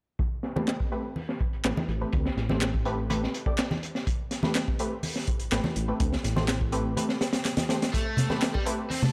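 Energetic and gritty, this short breakbeat cut runs at 124 BPM in a straight 4/4, sitting on an Am9 chord in A minor. A crunchy, dark breakbeat kit with a punchy kick and high-tuned snare sits up front under a filter sweep that runs until 7.9 seconds. Close, ringing congas and bongos played with soft hands join alongside dry, overdriven electronic handclaps. A fat, detuned sawtooth bass with a filter sweep enters at 1.5 seconds and holds the low end. The kick drops out at 7.0 seconds, just as the bass stops. A bold, nasal orchestra-hit-like synth stab with built-in reverb and tape echo cuts through across the piece. At 7.9 seconds a bright, double-tracked overdriven electric guitar riff arrives, roughened by 12-bit sampler grit and tape echo. The whole recording feels dry and gritty, with transformer saturation and only a light reverb.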